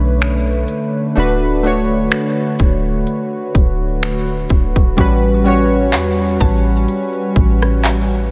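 Up front, a trap drum kit with a hard-clipped kick, crisp hats, snaps, handclaps and rim clicks carries this smooth, dreamy contemporary R&B excerpt at 63 BPM in D major, sitting over a deep, round 808-style bass. Chorused analog keys with a filter sweep and a hollow, flute-like pad with tremolo and sidechain pumping move through Bm9, D6 and A13. At 5.0 seconds a woody, mallet-like synth pluck with delay enters quietly in the background, all set in light reverb.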